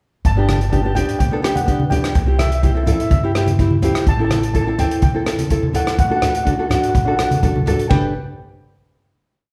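Calypso at 125 BPM in G major, festive and carefree, moving through a short verse over G, C, Am and D before settling on a final G chord at 7.9 seconds. A dark, smooth soul drum kit sits up front with a punchy kick, hi-hat, ride cymbal and rim clicks driving a calypso groove, joined by low-tuned, thick-skinned congas played with soft hands in a loose pattern. The steel pan carries the lead with a shimmering, metallic yet mellow tone, struck with soft rubber sticks and spinning song-like motifs between E5 and A5. A fingerpicked nylon-string guitar, small and close, plays rhythmic triad chords, while a woody, thumpy upright bass on gut strings holds a two-feel of roots and fifths in the background. The band plays live together in one large studio, wrapped in a moderate reverb that gives the whole piece a relaxed, open glow.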